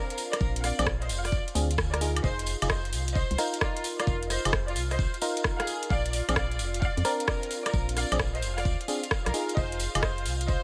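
A dark, hollow, organ-like FM bass sits up front with tube saturation, entering at 0.4 s alongside a knocking electronic kick to anchor this moody, soulful two-step UK garage excerpt, cut from a longer piece and carried by a heavily swung sixteenth-note feel. Around them, a garage kit of metallic hi-hats, rim clicks and woodblock, already playing from 0.1 s, sits with a jingly tambourine in the background, while a glassy, bell-like FM electric piano plays chorused, phased stabs with tape echo over chords moving between Bb9 and Fm7. A lush symphonic violin section carries the smooth, vibrato-rich melody through tape echo, and a silky vintage string machine holds soft chords underneath with sidechain pumping, all in a light reverb.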